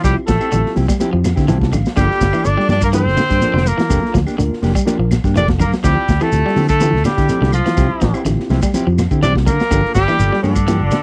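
A straight 4/4 afrobeat groove at 124 BPM drives this funky, hypnotic fragment in D minor, cut from a longer piece and moving between Dm11 and Gm7. A crunchy breakbeat kit sets the pulse with a punchy kick, a medium-tuned snare and a saturated, rolled-off top, with a short drum fill at 5.4 seconds. Beneath it, a round, amped fingered bass sits prominently, while a grainy shekere, very quiet woody claves and soft-handed, high-tuned congas, entering at 0.5 seconds, fill in the percussion. Two electric guitars weave through the middle: one, slightly broken-up and twangy, plays picked arpeggios in the background, and the other, clean and dark, adds fingered stabs. A very quiet, reedy electric piano with tremolo supplies accompaniment and a brief fill at 1.2 seconds. Up front, a vintage-toned trumpet with vibrato carries the melody, joined by a raspy, forceful tenor saxophone on a lower second line, all captured in a dry, close 1970s-style studio sound with little reverb.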